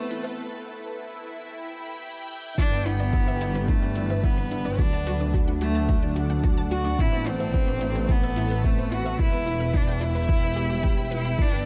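In a straight 4/4 at 109 BPM, this luminous, hopeful piano-and-strings electronica excerpt in G major opens with a filter-swept build-up and break: a distant, focused solo cello carries the bowed melody over a felt-muted upright piano riff, dark and boxy with audible action noise, while a bowed chamber double bass section with vibrato pumps under sidechain beneath a lush, detuned sawtooth pad with chorus and phaser and a round analog pluck playing delayed arpeggios in the background, all ringed by overdriven metallic electronic hi-hats and small room ambience, until the deep, tape-warm electronic kick lands up front at 2.6 s for the drop through G6, D and Amadd9 back to Em.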